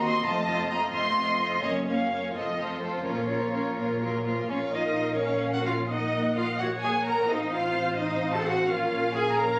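Urgent and stormy, this quick classical-period movement for string orchestra in Bb minor moves at 86 BPM in a straight 6/8, with a muted violin section carrying the melody over a second violin line, a lush, close viola accompaniment, a distant cello bass and a soft-attacked double bass, all con sordino and veiled in tone, heard through a moderate recital-hall reverb on a phone recording in a short cut from a longer piece that returns to its opening idea at 4.5 seconds.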